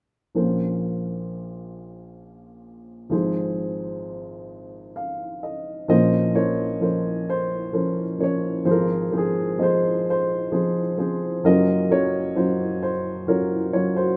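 A light reverb surrounds a dark, woody upright piano that sits up front in this short cut from a longer folk piece, heartbroken and melancholic in Bb minor at a slow 43 BPM in 6/8. The lone piano carries the melody across a range from Gb1 to F5, moving through Bbmadd9, Fm/Ab and finally Gbmaj7 chords. A piano fill from 4.5 to 5.9 seconds bridges into the second section, which runs to 14.2 seconds.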